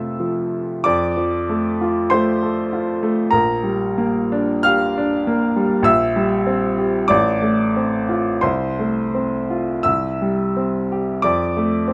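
Dreamy and serene, this short passage cut from a longer romantic nocturne unfolds slowly and freely, its rubato phrasing drifting over a gentle 4/4 pulse. A single upright piano carries everything from 0.0 to 11.9 seconds, ranging from A1 in the bass up to F6 in the treble. Its tone is woody and polished, with a long sustain that lets each chord ring and blend into the next. Close, detailed microphones place the instrument up front and present, while a light reverb adds a soft halo around the notes. The harmony moves from F through Gm/Bb and C7/Bb, settles on F/A and F/C, then leans on C before resolving home to F at 11.2 seconds.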